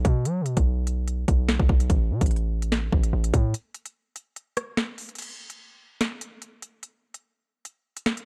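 Drill hip hop with a tense, cold half-time feel and a dark, dry production, where a punchy, heavy sine 808 bass with a noise layer and a fast attack that decays sits up front with an electronic drum kit of hard-clipped kick, sharp snare, rim clicks, crisp hi-hats and crash cymbal until the bass drops out at 3.5 seconds and the drums carry on alone to the end at 8.2 seconds.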